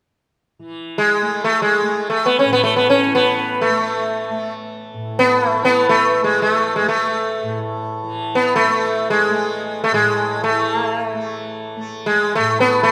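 A recital hall's generous reverb surrounds this meditative, devotional fragment of Hindustani classical music, which unfolds in free time. A softly plucked tanpura sets down its buzzing drone at 0.6 s, sitting low in the mix. At 1.0 s the plectrum-plucked sitar enters up front, its warm, shimmering tone ringing with sympathetic strings as it carries the melody.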